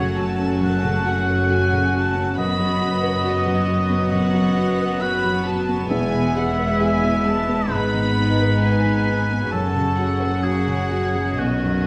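A stone room's reverb wraps this short, bittersweet cinematic fragment, which moves with a slow, rubato sway through longing minor-tinged harmony. An intimate, sul tasto studio violin section carries the melody up high, while a floating symphonic violin section and a warm, vintage-toned oboe with light vibrato weave second lines beneath it. A felt-muted upright piano with thick, mellow felt and a distant, clear viola section fill out the accompaniment, and woody, lush cellos and pure double basses anchor the bass from the background throughout.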